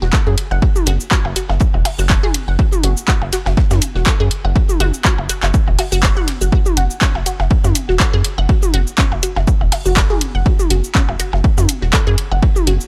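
Minimal techno in F# minor at 122 BPM, this quirky, sparse clip cut from a longer piece rides a 16th-note swing of 55%, with a rubbery, hollow square bass sitting up front under an overdriven, punchy electronic kick. A squelchy, bright resonant blip pluck carries the riff through phaser, analog chorus, tape echo and sidechain pumping, while an overdriven analog drum machine adds handclaps, hi-hat and shaker. Electronic percussion blips and toms join at 0.5 s, and a very quiet, damped 70s drum kit with dark cymbals and a fat snare sits beneath it all in a dry, gritty hardware sound.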